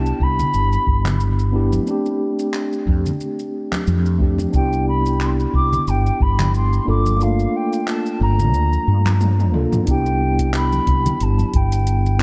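Sunset chillout at 90 BPM with swung sixteenths in C major, this smooth, echo-heavy passage cut from a longer piece sets a distant, hollow concert flute melody with vibrato and delay over a clean tine electric piano, filtered and delayed through its built-in speakers, alongside a round, dark fretless bass with ensemble chorus up front, an overdriven deep house kit of handclaps, hi-hat, shaker and toms, a deep analog electronic kick that drops out from 7.2 to 9.9 seconds as a drum fill arrives at 9.2 seconds, and thick-skinned congas played with hard hands in the background.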